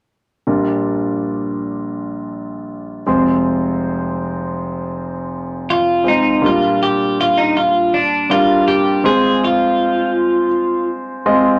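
Heartbroken and longing, this short pop excerpt moves at an unhurried 81 BPM in a straight 4/4, tuned slightly below standard pitch at A4 = 439 Hz. A concert grand piano carries the accompaniment from 0.5 seconds, its tone clear and intimate with deep bass, long sustain and the audible mechanical noise of its action up front. The harmony rocks between Bb6 and Fm, a pattern that repeats as the second section begins at 6.4 seconds. At 5.7 seconds a twelve-string electric guitar enters with the melody, picked cleanly with a bright, twangy, compressed edge that sits forward beside the piano. A club reverb gives the room a wet ambience, and the clip ends on the piano at 11.6 seconds, cut from a longer piece.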